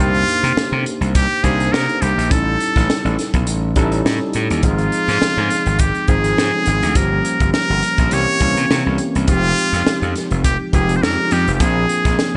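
A nasal, straight-muted trumpet opens with a close-miked, up-front pop melody full of vibrato and scooped notes, carried on a delay, over a barky, lightly overdriven tine electric piano with analog chorus through a combo amp and a gritty, punchy overdriven slap bass, while a crisp fusion kit with a high-tuned snare, tight kick and gated reverb in a pumping small room joins at 0.1 seconds, all driving a slick, urban 1980s jazz-funk pop groove in C minor at 103 BPM with swung sixteenths through a Cm9 to Bb9 progression in this short cut from a longer piece.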